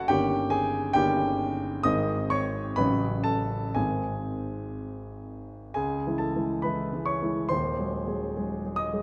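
Dark, reverberant concert-hall sound surrounds a warm, up-front grand piano in this stormy, passionate romantic character piece, cut from a longer work. The solo piano plays in 2/4 with free rubato at 58-71 BPM, ranging from the deep bass to the upper treble across nine seconds. Its harmony moves from a D#7 over G through G# and F#m, then turns toward C#m at 5.8 seconds before closing on a G#7 over D#.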